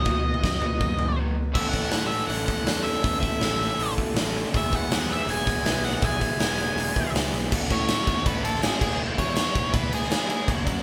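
Moody and cool, this indie rock passage, cut from a longer piece, drives along at 161 BPM in a straight 4/4, with the band playing live in one room under moderate studio reverb. A big acoustic rock kit sits up front with a bright stone-room sound, tight kick and medium-tuned snare, working through crash, ride, hi-hat and toms, while a growling picked bass, overdriven and punchy, sits back in the mix. Two dark rhythm guitars carry the riffs: a compressed overdriven guitar low in the background for the whole passage, and a slightly broken-up guitar through a small old amp that drops out at 7.5 seconds. Over them an octave-fuzz lead guitar plays the melody in a dark, distorted voice and takes a solo from 7.5 seconds as the harmony moves from A to E. From 4.5 seconds, on an Eadd9 chord, a very quiet, nasal analog pad adds detuned, chorused sustained chords with a sub-octave undertone, joined by a jingly, close and dry tambourine.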